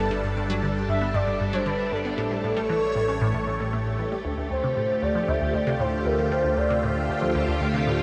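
This 8-second excerpt of mysterious, expansive, sequencer-driven space music opens with all four parts together at 116 BPM: a squelchy, resonant blip pluck riff with phaser and analog delay, swirling, up-front string-machine chords, a smooth portamento lead singing with vibrato, and a warbling analog drone underneath. The chords move from Gadd9 to A7 at 2.2 seconds, then settle on Dm7 at 4.2 seconds as the second section begins. Shimmer reverb on the lead and strings and a huge, wet ambient space with a 7.4-second decay give the music a vast, floating depth.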